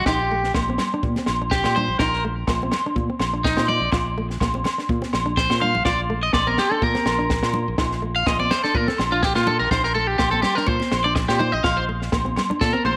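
A moderate spring reverb and studio ambience surround this sunny, danceable highlife excerpt at 124 BPM, where a twangy, slightly broken-up electric guitar sits up front with tape echo, playing arpeggios as a solo over chords moving from Eb/Bb to F/Bb. Underneath, a round, dark fingered bass and a dry compact cocktail kit with a punchy kick and high-tuned snare drive the swung 4/4 groove, with drum fills at 5.5 and 12.6 seconds. Ringing, vintage agogo bells add color, while hard-handed high-tuned congas and a fingerpicked flamenco guitar fill out the background.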